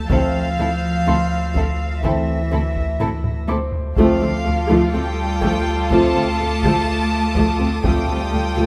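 Mysterious and eerie, this short cut from a suspense film score sets intimate chamber strings playing sul tasto with vibrato: a violin section carries the melody, a second violin line sits beneath it and a high violin texture hovers above, while dark violas accompany and cellos join a background double bass section on the bass. A thick, saturated sub bass drone and distant, roomy French horns sustaining chords weight the low end, and a clear baby grand piano adds faint texture in the background. Taiko drums struck with hard sticks sit back in a live room and play a fill from 3.0 to 4.0 seconds, heard through close, detailed microphones with light reverb.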